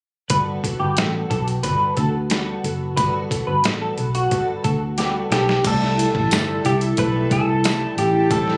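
A gritty, pitched-down trip hop sampler-style drum kit sits up front in this hazy, laid-back passage of indie bedroom pop, its thumpy kick and medium-tuned snare joined by a dark, foam-muted fingered bass and a picked steel-string acoustic guitar with finger squeak under ensemble chorus and vibrato. A slightly broken-up, lo-fi electric guitar through a small old amp plays a second line with analog chorus and delay, then a second such guitar takes the melody from 5.3 seconds. After a drum fill, a smooth, detuned sawtooth pad with tremolo sits in the background from 5.6 seconds, a jingly tambourine enters at 6.3 seconds, and light reverb and the ambience of a phone recording in the room frame the whole.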